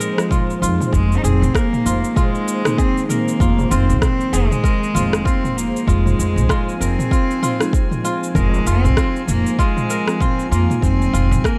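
A dry cut from a longer organic downtempo piece, earthy and mystical, in which a reedy, gut-string bowed cello carries the melody with tape echo over growly pizzicato upright bass, an overdriven electronic kick and a deep house kit of cabasa, rim click and toms, while crisp fingerpicked kora arpeggios ring through delay, muted felt-like synth keys warble with chorus and sidechain pumping, an airy, breathy pad holds sustained chords in the background, and a glassy texture of drifting overtones enters at 6.4 s.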